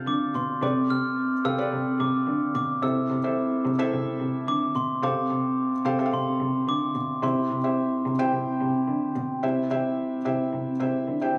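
A felt-muted upright piano opens this hopeful, uplifting piano-driven pop fragment, its intimate, up-front chords carrying audible action noise and short sustain, while a single muted cello, bowed con sordino with vibrato, lays down a dark, veiled bass beneath. A glockenspiel struck with rubber mallets sings a bell-like, ringing melody up front from 0.1 s until 8.8 s, after which piano and cello carry on together to the cut at 11.4 s. Captured on a phone in the room, the straight 4/4 music sits in a club reverb.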